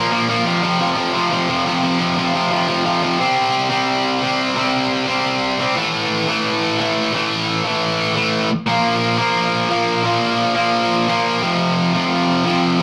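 Rebellious and rowdy, this short punk cut from a longer piece tears along at 175 BPM in a straight 4/4 in C mixolydian, tuned to A4 = 438 Hz, with a sludgy, bright, overdriven electric guitar playing alone, picked and double-tracked up front from F2 to C4 through power chords F5, C5, A5, Bb5 and back to F5, its shift into a new section at 3.2 seconds caught in a rough rehearsal-room recording with warm saturation and a wet studio reverb.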